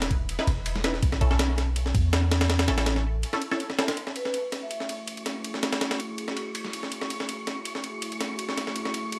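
Frenetic and raw, this drum and bass excerpt with jungle roots runs at 163 BPM in F# dorian, cut from a longer piece. A gritty, compressed breakbeat kit with a thumpy kick, high-tuned snare and ride cymbal sits up front throughout, high-pass filtered across kick, snare and cymbals. At the start, a deep, boomy 808-style bass with a sine core and noise layer anchors the thirdless Emaj7 and B9sus4 harmony, while a muted, resonant dub chord stab with a detuned, wave-folded edge flickers through phaser and dub echo. A short break at 3.2 seconds clears the bass, and at 4.2 seconds a metallic, ringing vibraphone with medium mallets adds a brief melodic phrase roughened by vintage 12-bit sampler grit and dub echo. The second half settles onto F#m7 as a warbling, nostalgic lo-fi pad with chorus and phaser and an airy, breathy wind-like noise texture drift in beneath the breaks, all held in light digital ambience.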